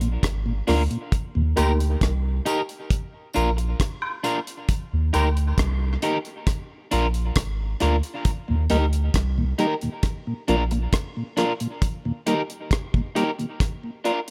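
A round, deep dub sub bass sits up front in this hazy, spacious dub reggae excerpt at 67 BPM in Eb major, holding down harmony that alternates between Bb and Eb before it stops at 10.9 seconds. A dry, dark reggae drum kit with a tight kick, hi-hat and rim click plays in straight 4/4 throughout. A slightly broken-up picked electric guitar, also up front, carries the accompaniment with subtle chorus, high-pass filtering and tape echo. A mellow tonewheel organ with key click and a slow rotary speaker appears briefly at the start and returns at 8.5 seconds. A vintage grand piano adds a single intimate stab at 1.6 seconds with audible action noise and tape echo, while distant tambourine and woodblock, also echoed, sound from a large room over the opening seconds, and the recording carries little reverb overall.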